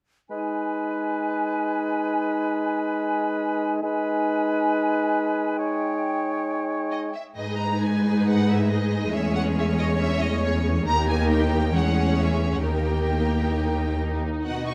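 A rich violin section carries the melody from 6.9 seconds, bowed smoothly with light vibrato, in this urgent, stormy classical excerpt in G# minor at 136 BPM in 4/4, played with a rubato feel. The passage opens at 0.3 seconds with woodwinds: an airy, bright flute ensemble high above, a clear solo oboe with a smooth top, a warm, roomy clarinet holding a single note, and a mellow bassoon with soft attack sustaining the low G# under a G# minor chord. At 7.4 seconds the woodwinds give way to the full strings. A second violin section, intense and lush, and a focused viola section fill the middle. An even, up-front cello section anchors the bass as the harmony moves between C#m/E and D#. A moderate scoring stage reverb places the strings at a slight distance and gives the whole ensemble a spacious, cinematic sound.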